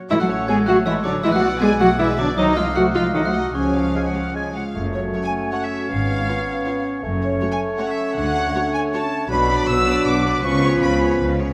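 In a straight-feel 3/4 lilt, this playful, sneaky film cue sets a close, bell-like glockenspiel melody, heard only until 4.5 s, beside a veiled con sordino studio violin section carrying the tune in the background, while a clear oboe, a dark clarinet, an airy flute section and a muted chamber violin section weave second lines, a warm bassoon and very quiet chamber violas accompany, mellow French horns hold sustained chords, and lush cellos and double basses anchor the bass, all within a moderate concert hall reverb.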